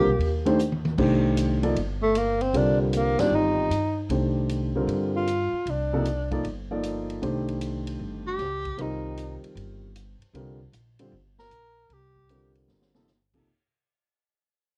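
Modal jazz in C dorian at a swinging 154 BPM, cool and intense, cut from a longer piece: a breathy, up-front tenor saxophone solos with vibrato and scooped notes over a woody upright piano with audible action noise and a pizzicato, steel-string upright bass, while a whispered trombone sounds only at the very start. A distant, roomy big-band drum kit with a punchy kick and medium-tuned snare plays fills at 0.6 and 12.7 seconds, and the passage fades out from 1.0 seconds. It sits in a moderate club ambience, colored by worn cassette tape with a warbling pitch drift.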